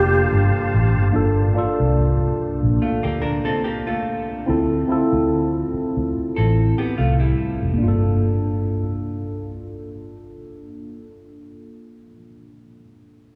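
A lightly swung 72 BPM pulse in 4/4 carries this soulful, introspective R&B fragment in G minor, with a round, foam-muted electric bass up front beneath a worn, slightly out-of-tune tine electric piano treated with phaser, as a pure, vibrato-tinged alto flute in the background, a fat, overdriven tonewheel organ with fast rotary speaker and a barely audible mellow horn section touch only the opening moments, before a dark, clean hollow-body jazz guitar adds a picked second line from 2.8 to 7.8 s over Gm9 and Dm9 harmony, all bathed in the long wash of a cathedral-like reverb.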